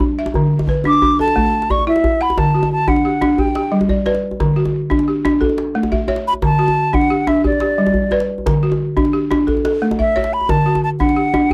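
A rolling twelve-eight pulse drives this joyful, hypnotic excerpt of West African string and xylophone music, with balafon, flute and djembe all sounding from the opening moment to the close at 11.5 seconds. Up front, a hollow concert flute carries the melody in its upper register, airy and close-miked with a crisp attack and vibrato, and it takes a solo passage during the first 2.4 seconds. Beside it, the balafon spins steady arpeggios across a broad span, its rubber mallets drawing a woody, buzzing, dark yet smooth tone. A medium-tuned djembe supplies acoustic percussion from a live room, sitting lower in the balance. Once the second section begins at 2.4 seconds, the harmony circles through D, G and A, feeding the trance-like repetition. Light reverb softens a dry, close studio sound in a 1970s style, and the passage is cut from a longer piece.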